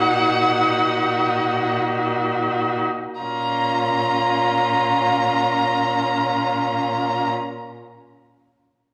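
A fragment of a slow, romantic string quartet movement in free time opens with all four bowed players together: a clear first violin sings the melody up front over the second violin's warm, expressive line, a rich, softly attacked viola sits further back, and a cello holds the bass with a focused tone. The mood is yearning and elegiac, with vibrato in every part and portamento in the inner voices, and the music slows during its first 3.2 seconds before the harmony moves into a new passage. A reverberant recital-hall acoustic surrounds the quartet and carries on after the instruments stop at 7.3 seconds.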